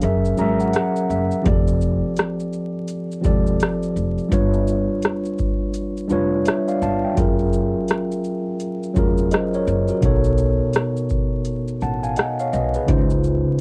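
A mellow, clean tine electric piano sits up front through its built-in speakers, opening with a fill over the first 1.5 seconds before carrying chords such as Gb9, G7#11 and Gbmaj9 across this nostalgic, dreamy lo-fi hip hop cut from a longer piece. Beneath it, a pizzicato upright bass with a woody, steel-strung tone plays until 13.4 seconds, while a booming analog drum machine, also up front and run through cassette tape, lays down a deep kick, metallic hats, rim click and shaker at 84 BPM with a swung 16th-note feel. The whole track carries a homespun cassette sound with vinyl crackle and a short, moderate booth ambience.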